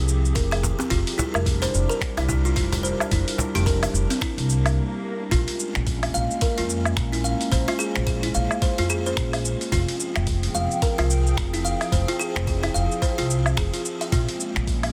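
Lightly reverberant and densely limited, this excerpt of earthy, meditative organic downtempo swings gently as a warbling, nostalgic lo-fi pad with chorus and shimmer reverb holds sustained chords under a woody pizzicato upright bass placed up front with sidechain pumping. A bright, buzzing kalimba plays thumbnail-plucked arpeggios through digital delay and shimmer, over a gritty, overdriven sampler-style kit of cabasa, finger snaps, hi-hat and woodblock, a soft electronic kick, and a snappy cajon that plays only until 4.2 seconds. A very quiet electronic swell and a brief break lead at 5.3 seconds into a new section built on Bbm9 before the harmony returns to Fmadd9.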